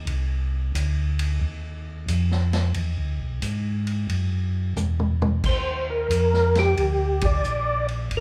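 Soul jazz organ trio at 90 BPM with a smoky, soulful swing, cut from a longer piece, moving from Cm through E9 to Ebmaj9. A mellow tonewheel organ holds the bass from the start through a slow rotary speaker, with audible key click, while a vintage drum kit with dark cymbals, a punchy kick and a rolled-off top plays a fill at 4.8 seconds. At 5.5 seconds a percussive tonewheel organ enters with a round melody lit by third-harmonic percussion and chorus vibrato, just before a band accent at 7.1 seconds, all set in a recital hall with a 1.6-second reverb.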